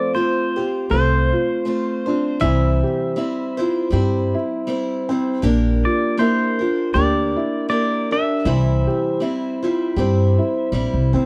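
A twangy pedal steel guitar opens this peaceful acoustic folk piece at once, carrying a short solo with fingerpicks, slide and volume swells, its clean tone lightly compressed. Beneath it, a picked archtop guitar sits up front with a bright, boxy sound and audible finger squeak, while a felt-muted upright piano adds soft, mellow arpeggios with a vintage, intimate character. At 0.9 seconds a woody, dark pizzicato upright bass joins, standing close and prominent in the mix. The tempo is an unhurried 79 BPM in 4/4 with a light swing on the eighth notes, and the harmony moves gently from F to C, then Gm/Bb and back to C. The dry, close recording has a small-room ambience and a 1970s studio feel, giving this brief cut from a longer piece a warm glow.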